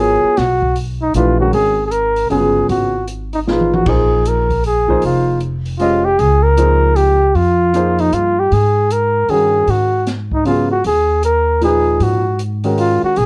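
A swung 3/4 pulse at 155 BPM drives this intense, hypnotic modal jazz excerpt in G# dorian. A bucket-muted trumpet carries a veiled, mellow solo melody up front with light vibrato and a soft attack, over a warm baby grand piano shifting between G#m11 and A#m11, and a woody pizzicato upright bass. A dark-toned small-room drum kit, with a boomy kick and high-tuned snare, joins at 0.4 s and plays a brief fill at 3.5 s. Light reverb and the worn, warbling pitch drift of old cassette tape color the recording.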